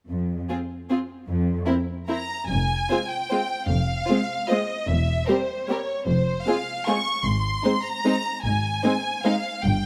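Classical orchestral ballroom waltz in F minor at 151 BPM in 3/4, sweeping and dark with rubato and uneven beats, where a rich, up-front cello section opens the bass before a focused violin section carries the smooth-topped melody, a warm second violin section adds an expressive line with portamento, a lush viola section fills the accompaniment, and a bright double bass section enters at 2.5 s beneath bowed, vibrato-laden strings captured with close, detailed microphones and light reverb.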